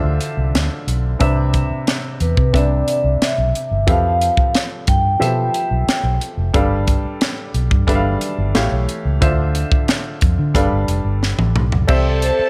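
A mellow, airy vibraphone played with soft mallets carries the melody from 2.2 seconds, its metallic ringing tone shimmering with a slow motor vibrato over a lush, romantic 1970s-style soul groove. A baby grand piano with an open, short-sustained sound plays the accompaniment, while a dark, round, foam-muted electric bass and a tight, up-front funk kit with a high-tuned snare hold the foundation in light small-room reverb. A drum fill at 11.2 seconds leads into the final moments, where a reedy, smooth-topped bowed string section with a gut-string, period-style tone enters at 11.9 seconds, shortly before the vibraphone briefly returns.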